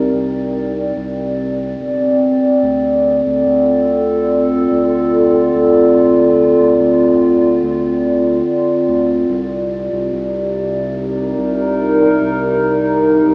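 Soaked in wet spring reverb and given an AM-radio sound, this hazy, spacious ambient dub fragment at 72 BPM in C dorian places a warbling, nostalgic tape-like pad of detuned, dark chords with chorus up front, moving from Cm7 to Dm7 at 2.6 seconds and back at 9.3 seconds, over a deep, round dub sub bass sitting much lower in the mix.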